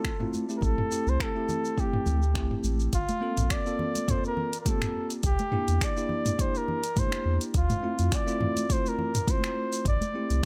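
Warm and wistful, this sunset chillout clip sways on lightly swung sixteenths as a breathy, mellow flugelhorn carries the jazz-style solo melody up front, its soft attack and light vibrato trailed by delay, over bell-like, clean tine electric piano chords roughened with vintage 12-bit sampler grit and digital delay. A deep electronic kick anchors a layered deep house kit of finger snaps, hi-hat, shaker and toms, both re-recorded in a small room, while bright acoustic congas sit close but in the background from 0.3 s. A round, sustained sine sub bass with a fast attack joins at 0.6 s under light reverb and digital ambience, moving through rich seventh, ninth and eleventh chords.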